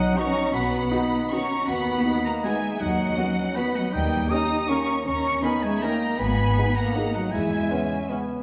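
Festive and elegant, this orchestral passage cut from a longer classical piece moves in triple metre with elastic rubato, its melody carried by a rich, vibrato-laden studio violin section, joined in the same high register by an airy silver flute and a clear oboe while a symphonic violin section sings just beneath. A close-miked, mellow bassoon and very quiet violas fill the middle as soft-attack French horns and distant, roomy trombones hold sustained chords, and bowed cellos and double basses anchor the bass. The ensemble is heard from further back in a reverberant recital hall, with the harmony moving from B through B/D#, D#7 and G#m to C#m7/E.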